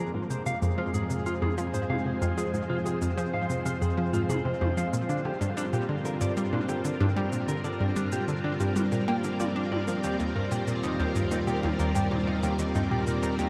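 Drenched in a huge, echoing reverb that suggests a vast space, this excerpt of expansive, cosmic, sequencer-driven space music moves at 94 BPM in F dorian over Fm, Gm and Eb chords. A lush, vintage string machine ensemble holds slow-attack sustained chords up front, while a round, detuned analog pluck with a fast attack and short decay drives a bright riff through chorus and tape echo. Alongside them a dark, fingered clean electric guitar spins echoing arpeggios, a mellow, evolving analog drone bass enters at 0.4 seconds in the background, and electronic cabasa and toms, re-recorded in a small room, tick along from 0.3 seconds.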